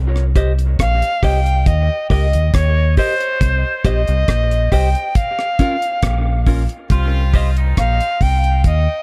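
A round, dark fingered electric bass opens this heavy, hypnotic dub reggae excerpt at 69 BPM in C phrygian. It is joined by a dry reggae drum kit with a tight kick, playing hi-hat, kick and rim click, and by a clean, compressed electric guitar with high-pass filtering and dub echo. An up-front, bright, reedy concert flute carries the melody with a soft attack, vibrato and echo. A filter sweep begins at 3.4 seconds during the break, and a warm, tight horn section slips in with a filtered, echoed second line at 6.9 seconds, the whole echo-heavy mix sitting in a light small-room reverb.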